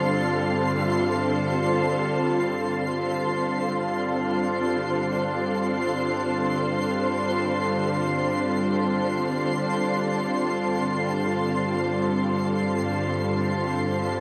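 Reflective and spacious, this ambient passage in free time drifts on a single Dm7/G chord and is cut from a longer piece. A glassy FM pad sits up front with slow-attack, long-release sustained chords thickened by ensemble chorus, while a twinkling granular texture sparkles above it with an octave-up shimmer. Alongside them a very quiet, string-like drone built from detuned sawtooth and triangle tones, ring modulation and vibrato holds a tense, sustained hum. A clean, twangy electric guitar picks only a brief, very quiet arpeggio on F5 before falling away at 0.7 seconds. From 2.6 seconds a chamber cello section with a reedy, gut-string, period-style tone fades in on a low G2 bass, and a wet shimmer reverb with a 6.9-second tail bathes the whole sound.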